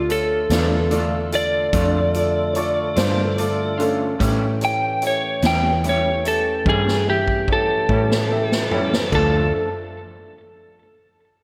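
Soulful and mournful, this slow blues in D harmonic minor moves at 49 BPM in a 12/8 metre with a straight feel, and it is cut from a longer piece. An electric slide guitar carries the melody up front, its fingerpicked tone slightly broken-up and compressed, with slapback echo. Beneath it a tonewheel organ holds sustained chords in the background, fat and lightly overdriven, with key click, chorus vibrato and a slow rotary speaker, while a foam-muted vintage fingered electric bass supplies a round, punchy low end. A brilliant baby grand piano and a picked electric guitar through a small old amp, dark and carrying harmonic tremolo, add accompaniment, and a woody upright piano with long sustain and tape echo enters at 2.5 seconds with a second line. The harmony moves from Dm to A7 at 4.2 seconds, and a swinging big-band drum kit with a medium-tuned snare and a natural big-room sound plays a fill from 6.7 seconds before the harmony returns to Dm at 9.1 seconds. 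The whole mix sits in a wet concert hall reverb with small room ambience, giving it a big arena sound.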